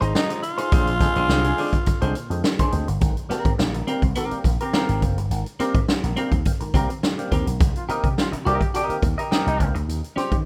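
A growling, raspy tenor saxophone opens this cool, sly funk excerpt at 105 BPM in a straight 4/4, sitting up front with plate reverb over a full band that starts together, and it drops out at 2.7 seconds during a band accent. Underneath, a twangy, compressed clean electric guitar plays picked accompaniment through a lush chorus, while a fat, lightly overdriven tonewheel organ adds percussive stabs from the background through a stopped rotary speaker. A punchy slap bass with an envelope filter drives the low end, and a swinging big-band drum kit with a boomy kick and medium-tuned snare plays hi-hat, kick and snare close up in a natural, big-room sound. A bright, forceful trombone with light vibrato adds a distant second line in two entries, first at 1.0 seconds and again from 7.8 seconds. The harmony moves from Fm7 and Bb9 into a longer Abmaj9 passage, then on to Cm7 and Eb13, all captured in a rough home demo mix with light reverb.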